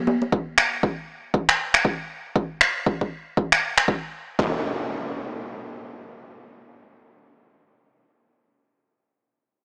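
A dry, gritty recording with a small-speaker sound sits inside a moderate, lush hall reverb in this short cut from a longer afro house track, driving and warm at 118 BPM in 4/4 with a 16th-note swing. A punchy, layered electronic kick drum, re-recorded in a small room and placed up front, opens the first section and is soon joined by produced electronic finger snaps. At 4.4 seconds the kick gives way to an up-front electronic impact that carries the second section.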